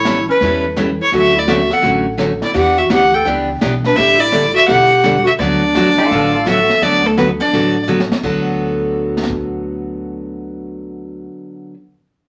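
Set in a wet club reverb, this swinging, playful western swing passage moves at 169 BPM in D major, with a clear, biting fiddle up front carrying the melody over a breathy, whispered clarinet second line. A bright, full-bodied picked acoustic guitar and a woody, thumpy pizzicato upright bass drive the changes from A9 through Dmaj7, Em7 and A7sus4 to D6, while a dark, rolled-off vintage brush kit sits in the background. A clean pedal steel slides in briefly with volume swells around 6.0 seconds, a drum fill arrives at 7.9 seconds, and the guitar and bass carry on, with the guitar ringing until 11.8 seconds.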